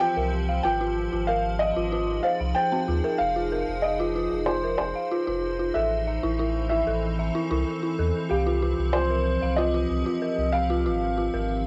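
Opening at 0.0 s, a soft, felt-muted upright piano carries the melody in this cerebral, glitchy IDM excerpt at 94 BPM in F minor, its intimate, dark tone roughened by vintage 12-bit sampler grit and tape echo. Beneath it, an icy glass pad holds airy, crystalline chords, thickened by chorus and its own built-in reverb and colored by cassette tape. A dark, detuned synth bell spins eerie, inharmonic FM arpeggios with a full-bodied, mellow ring, treated with chorus, cassette tape and tape echo, before falling silent at 11.4 s. A round, warm sine sub bass enters at 0.2 s and sits deep and up front. The harmony drifts from Csus4 through Ab6, Fm7 and Am before returning to Csus4 and Ab6, all set in a moderate studio reverb with the character of a home cassette recording.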